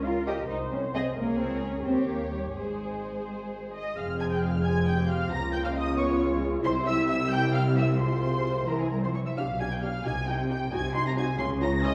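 A muted violin section carries the melody of this restless, stormy classical-period movement for string orchestra, its veiled, con sordino tone sitting high with light vibrato and a smooth top. A second muted violin section joins at 0.3 s with a supporting line that sounds distant and soft in attack. Beneath them, muted violas fill in the accompaniment, while a dark-toned cello section, bowed with vibrato and a chamber character, shares the bass with a double bass section that sits up front. The music moves in 6/8 with a straight feel, and after an opening passage a new section begins at 4.0 s as the harmony turns stormier into F minor, pressing through shifting chords. All five string sections play con sordino, and the whole ensemble is heard from further back in a recital hall, whose reverb adds a wet, lingering glow to this short cut from a longer piece.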